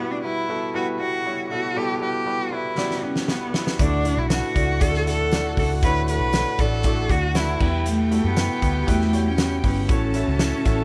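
Light reverb surrounds this recording, with the bowed cello and the drum kit placed up front. This excerpt of anthemic, uplifting piano-driven pop moves at 118 BPM in a straight 4/4 in D major, with its harmony passing from Emadd9 to Dadd9, back to Emadd9 and then onto A6. A rich solo cello carries the melody with vibrato, a soft attack, portamento and plate reverb over a clear concert grand piano whose deep bass and long sustain fill out the accompaniment. The loose indie drum kit enters with a fill at 2.8 seconds, bringing a fat snare, punchy kick, dark cymbals and a pumping room sound. At 3.8 seconds a vintage muted fingered electric bass adds a round, amped low end, while a smooth, even studio violin section plays a second line in the background. A jingly, bright tambourine joins very quietly at 4.3 seconds, close and dry.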